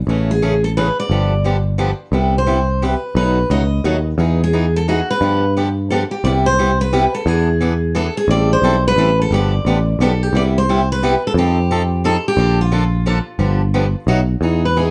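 A lively, playful slice of acoustic string swing in the jazz manouche style, cut from a longer piece and set in a bouncy triple metre with a swing feel. A bright, boxy swing-style acoustic guitar carries the picked accompaniment from 0.1 seconds, while a picked electric bass with a growly, direct tone sits up front beneath it. At 0.3 seconds a steel-string acoustic guitar takes the melody, its picked lines sounding warm and roomy, with audible finger squeaks adding a close, human touch. The harmony wanders restlessly through colourful major-seventh and dominant chords in the opening passage before settling into a home key at 6.2 seconds, where a second section keeps cycling through seventh chords. A moderate studio reverb gives the trio a natural sense of space, and the top end is gently rounded off.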